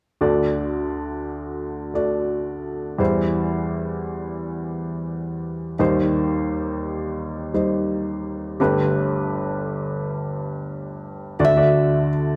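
A straight 4/4 pulse at 86 BPM carries this intimate, hopeful acoustic folk-pop ballad excerpt, tuned to A4 = 439 Hz, where a woody, slightly detuned upright piano sits up front with audible action noise, moving through D, C/E, Eb6 and Gadd9 from 0.2 s. At 11.4 s, as the harmony returns to D, a fingerpicked classical nylon-string guitar with fresh strings and a touch of finger squeak joins the piano to take the melody, all set within a wet recital hall reverb and a dark, warm production.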